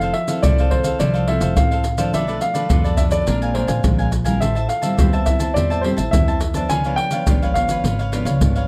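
Samba and choro at a lively, festive 105 BPM in F major, this short excerpt sets a warm grand piano melody over crisp, bright picked cavaquinho, fingerpicked classical nylon-string guitar and woody pizzicato upright bass, while up-front maracas, pandeiro and a tight surdo played with soft hands drive the groove through jazzy changes from Fmaj7 to Db7b9, all in light reverb.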